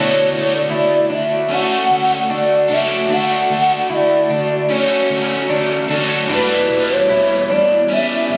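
Ethereal and dreamy, this short dream pop excerpt in straight 4/4 drifts from Dmaj7 to Em7 at 6.3 seconds as a hollow, woody clarinet-like synth lead sings the melody through chorus and tape echo over a bright, overdriven cranked stack guitar with harmonic tremolo and analog chorus, a warm, slightly broken-up electric guitar picking arpeggios with subtle chorus and tape echo, a blurred, evolving granular cloud pad holding sustained chords, and a dark, round, foam-muted electric bass low in the mix, all bathed in moderate plate reverb and heard as if captured on a phone in the room.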